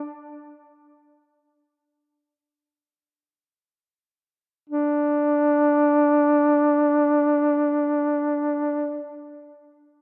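A mellow solo duduk sits up front in this mournful, longing Caucasian folk lament in free time, its vibrato and scooped notes hovering around D4 with a smooth top, slowing through the opening phrase before a second phrase begins at 4.7 seconds, all bathed in a lush hall reverb within a rough home-demo mix that is cut from a longer piece.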